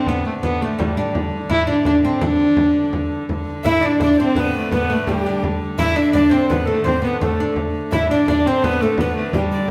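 A brisk, straight triple metre at 168 BPM drives this rustic, ancient-sounding medieval dance, cut from a longer piece. A single viola da gamba carries the melody up front, its bowed, fretted gut-string tone nasal and reedy with light vibrato and a ringing, boxy body. Behind it, a fretless, plectrum-plucked oud adds a woody second line from its double strings, while a clear hurdy-gurdy holds a biting, earthy drone on D3. A large frame drum, played with soft hands, gives a deep, close pulse. The opening phrase repeats from 3.3 s, and a breathy alto recorder joins with a second line at 3.6 s, its straight tone soft in attack with lifted highs. The whole band plays live in one room, wrapped in a wet studio reverb.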